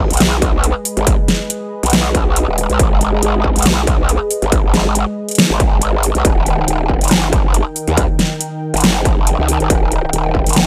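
Heavy wobble dubstep at 139 BPM in 4/4 with a half-time feel and a light swing on the sixteenths, this chaotic, aggressive clip sits in G# harmonic minor, tuned to A4 = 438 Hz, and is cut from a longer piece. A growling, saturated bass sits up front across the whole clip, its sine-based tone pushed through a formant filter, overdrive and chorus for a bright, wobbling snarl with a fast attack. Behind it, a lush unison pad of detuned sawtooths holds sustained chords with a slow attack and long release, its thick, warbling vintage character colored by chorus and pumped by sidechain, mixed well beneath the bass. The dubstep kit brings a huge snare and metallic hats forward with studio reverb, while a layered, distorted electronic kick enters at 0.4 seconds. The harmony rests on G#m before moving to D# at 6.2 seconds, and the overall sound is loud with little room ambience.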